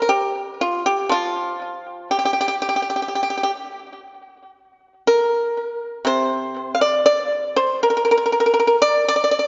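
A solo pipa, bright and percussive and played up front with fingerpicks, opens this 9.5-second excerpt of contemplative, longing Chinese traditional music at a free rubato pulse around 60 BPM, ranging from C3 to F5 through tape echo inside a lush, dreamy hall reverb whose top end is rolled off above 7.6 kHz.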